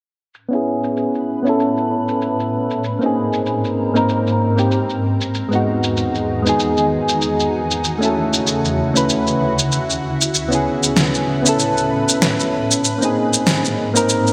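Sunset chillout with a blissful glow, cut from a longer piece, where a fat, tape-warm electronic shaker and snare with gated reverb enter at 0.3 seconds, joined at 0.5 seconds by soft, round electric-piano-like synth keys carrying a filter sweep, chorus and delay, and a shimmering, ethereal pad with octave-up sparkle holds sustained chords from 0.8 seconds through a lush hall reverb and bright 1980s-style digital sheen, moving through major-ninth chords from Amaj9 down to G#add9.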